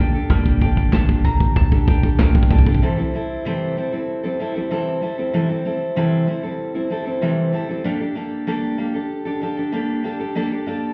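A punchy, up-front country drum kit plays a fill from 0.3 seconds, building toward an anthemic lift in this nostalgic indie folk excerpt, with faint hollow group handclaps in the background, a bright double-strung mandolin playing arpeggios, and a very quiet, woody pizzicato upright bass. The mandolin and bass stop at 2.8 seconds and the drums at 2.9, leaving the full-bodied picked dreadnought acoustic guitar to carry the accompaniment alone over C6 and then Gmadd9 chords. The whole recording sounds muffled, as if heard through a wall, with club reverb and a dulled top end.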